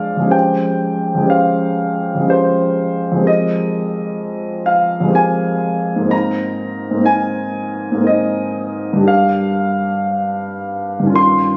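Hazy and mysterious, this short excerpt of impressionist solo classical piano drifts in 3/4 with uneven, rubato beats as a clear, present grand piano sits up front, its long sustain ringing across a range from F2 to C6. The harmony moves through Dbmaj7#11/F, Fm11, Abadd9 and Gm7, colored chords that deepen the dreamy uncertainty. Captured on a phone in the room, the sound carries a wet recital hall reverb and a muffled top end.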